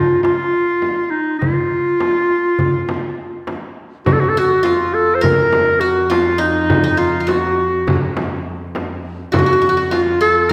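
Turkish makam ensemble music in F makam hicaz, this festive clip from a longer piece moves in 9/8 at 204 BPM counted in eighths, with a straight feel. A mellow clarinet carries the melody from the start, playing solo and up front in a jazz style with light vibrato, subtone, scooped notes and a smooth top between Eb4 and C5. Darbuka and frame drum enter almost at once. The darbuka has a crisp, close and dry metal-shell sound, while the small frame drum sounds bright and distant in a large room, both played with soft hands. At 4.1 seconds a single bowed double bass joins on an F2 drone, muted con sordino so its dark, veiled tone and soft attack sit low beneath the ensemble. At 4.4 seconds a plectrum-plucked qanun adds a second line between Eb4 and Bb4, its triple strings giving a bright-edged, acoustic shimmer, all set in the wet reverb of a church or concert hall.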